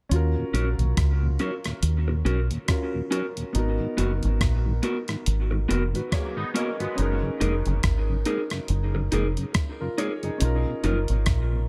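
A deep, punchy dub bass sits up front in this longing, bittersweet lovers rock reggae fragment at 70 BPM in Eb minor, joined by a thumpy, crisp 8-bit drum machine of kick, hi-hat and rim click, an intimate grand piano and a slightly broken-up guitar stabbing through tape echo, a mellow organ turning on a slow rotary speaker, and a brief twangy guitar arpeggio from 6.1 to 7.2 seconds, all moving from Ebm7 to Abm9 and finally Bmaj9#11 in a dry, close room.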